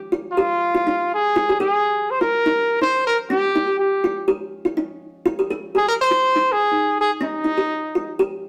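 A rough rehearsal-room recording with a moderate stone-room reverb, this short excerpt of a hypnotic, driving afrobeat groove moves at 123 BPM in a straight 4/4 in F minor, cycling between Ebadd9 and Fm7. A buzzing, woody kalimba with a hollow, boxy ring sits up front from 0.1 seconds, its thumbnail-plucked arpeggios carrying a warm resonance. Joining at 0.3 seconds, a clear solo trumpet takes the pop-style melody up front with a light vibrato.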